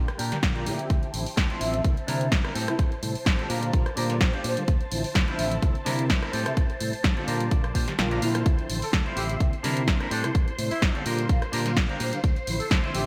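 A punchy, tape-warm electronic kick sits up front in this funky, nostalgic filtered disco house excerpt at 127 BPM in D minor, with swung 16ths and a filter sweep across the whole 13 seconds. It briefly drops out at 8.0 s, while an analog drum machine adds hi-hat, rim click and a gated snare, and a barely audible tambourine ticks beneath. A growly, saturated fingered bass, round detuned synth brass, a swirling phased string machine with 12-bit sampler grit, and a clean hollow-body guitar riff with short fills all pump against the kick over a looping Bb6–Dm9–C9–Am7 progression, before a smooth pop-style horn section takes the melody from 8.8 s, all in a bright 1980s-style digital sound with light reverb.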